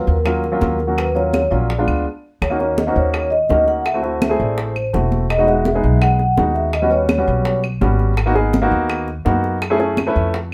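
A straight 4/4 groove at 167 BPM drives this sultry, sophisticated Afro-Cuban jazz excerpt in Eb phrygian, where bright, high-tuned congas sit in the background beside tight, saturated bongos and woody claves, a dark, thumpy pizzicato upright bass with gut strings stands up front alongside a warm grand piano of short sustain, and a mellow, ringing vibraphone with soft mallets and medium motor vibrato carries the melody until 7.6 seconds, with a brief stop from 2.1 to 2.4 seconds and light reverb across the room.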